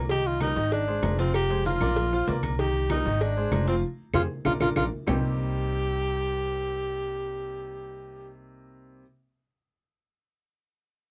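A driving salsa groove at 193 BPM in straight 4/4 sets the pace for this fiery, danceable latin cut in C minor, taken from a longer piece. Low-tuned congas played with soft hands, tight high-tuned bongos with cowbell, ringing metal-shell timbales with agogo bells, and woody claves sit in the background, while a thumpy pizzicato upright bass with steel strings anchors the groove from up front. A clear, polished upright piano accompanies through a cycle of Cm7, Ab, Fmadd9 and Bb, and a breathy tenor saxophone carries the melody in a pop style with vibrato. The band hits an accent from 3.8 seconds as a drum fill closes the opening section, and the percussion stops at 5.1 seconds, leaving piano, bass and saxophone for the second section. The sound is a dry, close 1970s-style studio recording with light reverb.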